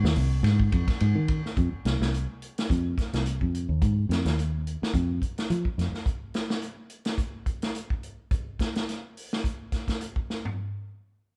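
Afrobeat in F minor at 106 BPM, this short excerpt from a longer piece has a funky, hypnotic groove in 4/4 with a gentle swing on the sixteenths. A fingered electric bass, dark and round with a foam-muted, direct and amped tone, sits up front and ranges between C2 and F3 before dropping out at 6.0 seconds. A vintage acoustic drum kit carries on through the full 10.6 seconds, its punchy kick and medium-tuned snare joined by hi-hat, ride cymbal and toms, all up front with a natural, small-room character. The shift from the opening section into a longer second passage comes at 1.6 seconds, and a drum fill arrives at 10.3 seconds. The band sounds as if it is playing live in one room, with light reverb around the sound.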